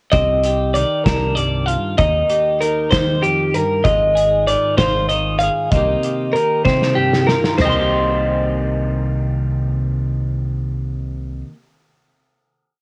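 Wistful and intricate, this complete piece blends math rock and midwest emo in a lilting 6/8 with a straight feel. Two clean, twangy, compressed twelve-string electric guitars carry it, both colored by cassette tape: one sits up front with a picked accompaniment ostinato in the lower and middle register, while the other plays syncopated fingerstyle arpeggios high above. A punchy, bright fingered electric bass sits forward and direct, locked to the kick drum. A loose indie drum kit with dark cymbals, a medium-tuned snare, a tight kick and a rolled-off top plays a 6/8 groove in a pumping room, closing with a fill from 6.6 to 7.6 seconds. The harmony moves through Cm9, Eb6 and Ab6 before settling on a sustained Cm7 from 7.6 seconds, all framed by light reverb and small-room ambience in a home cassette recording.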